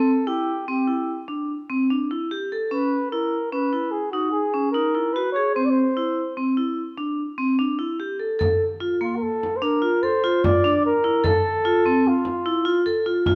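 Set in a straight, uneven 7/4, this short excerpt of contemporary chamber music feels hopeful yet restless. A vibraphone struck with hard mallets carries the arpeggios throughout, its metallic, ringing tone sitting up front with a vintage, band-limited colour and its motor off. Above it, a mellow flugelhorn sings the melody in a classical solo style, with a soft attack and light vibrato in a roomy space, until it stops at 12.9 seconds. A small, bright frame drum played with hard hands enters at 8.4 seconds as the second section begins, its acoustic sound compressed and saturated. The harmony moves from a rootless Am7 through E6 and C to Bbmaj7 and F/C, all set in a dark production with light reverb.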